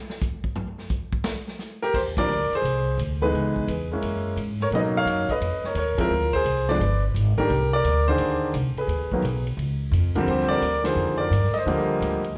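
Warm and sophisticated, this jazz piano trio swings at 173 BPM in 4/4 in E-flat major, in a brief cut from a longer piece. A big-band style drum kit opens the cut, with its punchy kick, medium-tuned snare, hi-hat, ride, crash and toms sounding natural in a studio room. A clear, intimate baby grand piano takes the melody from 1.8 seconds, sitting up front with long sustain, audible action noise and a slapback echo. A woody pizzicato upright bass with steel strings joins at 1.9 seconds, and the band hits several accents together. The harmony moves through rich extended chords such as Dbm7, Gb9, Bmaj9 and Cm9 before settling on Ebmaj9, all heard as a live gig through the venue's PA with club reverb.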